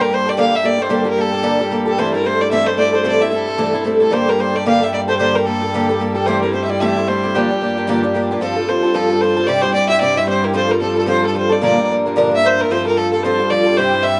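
Celtic folk reel at a driving 224 BPM in G dorian with a swung eighth-note feel, where a warm, reedy gut-string fiddle carries the spirited melody up front with slapback echo, a dark, woody, shimmering octave-doubled twelve-string acoustic guitar picks the accompaniment alongside it with the same echo, and a rich, earthy chamber string section sustains a low drone with light vibrato beneath, all captured dry outdoors with a dulled top end as the chords move from Gmadd9 and Am/G in the opening section to F, C and Bb after 8.4 seconds.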